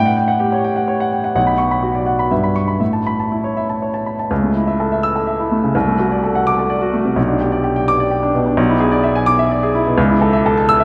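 Sparkling and brilliant, this short excerpt from a longer classical piece is a virtuoso piano study in 3/4, played with a free, rubato feel. A solo baby grand carries everything from 0.0 to 10.8 seconds, ranging from B1 up to E6, its tone polished and present and placed up front. The piano sits in a vast, echoing cathedral, and the wet reverb, with a 5.0-second decay, lets each chord ring long into the space. The harmony moves from A6 through Bm and Em/G to A, then a second section beginning at 4.3 seconds passes through A/C#, D7/C, G/B and E7/B before returning to A/C#.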